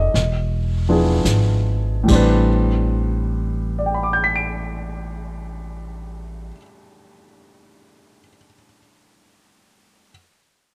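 A close, warm baby grand piano accompanies this brief, intimate jazz ballad excerpt in A minor, playing through 10.1 seconds with a short, natural sustain as the slow 46-58 BPM swing pulse eases down in its opening moments and the harmony moves from E7b9 to Am11. A woody pizzicato upright bass sits up front beneath it until 6.5 seconds, while a distant, roomy brush kit with dark cymbals and a boomy kick appears only from 0.2 to 2.3 seconds. The dry, melancholic sound is cut from a longer piece.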